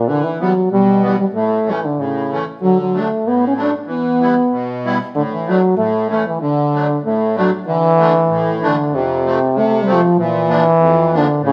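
Alpine folk dance-band music with a festive, jolly lilt in a gently swung two-beat feel, where a clear, classical-style euphonium carries the solo melody up front over a reedy, shimmering musette accordion with a vintage, band-limited tone, the pair playing live together in a wet stone room until the music turns to a darker minor colour at 7.7 s in this short cut from a longer piece.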